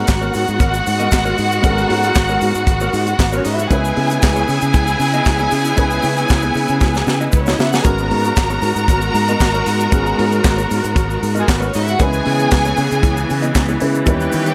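A lush, up-front violin section carries the second line in this sultry, danceable disco excerpt, its bowed ensemble tone smooth and even with gentle vibrato. Set in G# minor at 116 BPM in a straight 4/4, the harmony moves between G#m11 and C#m7, held together by a clear, focused studio string section playing sustained chords. A tight, dry funk drum kit sits at the front from 0.1 s with handclaps, hi-hat, a tight kick and a medium-tuned snare, adding a fill at 6.8 s, while a grainy egg shaker ticks quietly behind it. The fingered electric bass is bright and growly, with a direct, amped edge. Further back, a clean, compressed electric guitar with spring reverb and a dark, intimate baby grand piano, its action noise audible and its notes short, fill out the accompaniment inside a light studio reverb.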